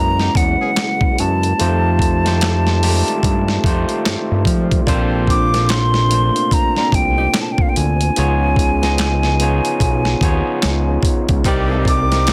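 A hollow, pure concert flute with vibrato and slapback echo carries the melody in this introspective, smooth R&B and neo-soul excerpt at 73 BPM with a swung sixteenth feel, over a fat, detuned analog bass up front, a barky, overdriven tine electric piano heard through a combo amp, a very quiet tonewheel organ holding sustained chords through a slow rotary speaker, mellow horn stabs in the background, and a gritty, thumpy sampler-style soul drum kit with handclaps, hi-hat, kick and snare, moving through chords from E69 to Cm9 under light reverb and a dense, heavily limited master.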